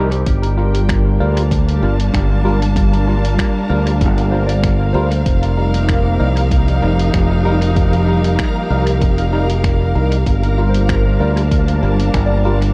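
Ambient dub at 96 BPM in G minor with a meditative, deep mood, moving from Gm7 to F9sus4 and back. Sustained chords from a studio string section with vibrato and portamento sit over a growly, up-front fingered electric bass and a layered electronic kick, while a barky tine electric piano stabs through phaser and dub echo; muffled, pitched-down sampler-style finger snaps and hi-hat carry their own dub echo, a reversed, detuned granular texture swells dreamily in the background, and a very quiet FM synth bell returns at 4.3 s with gentle arpeggios, all within a dark, warm production.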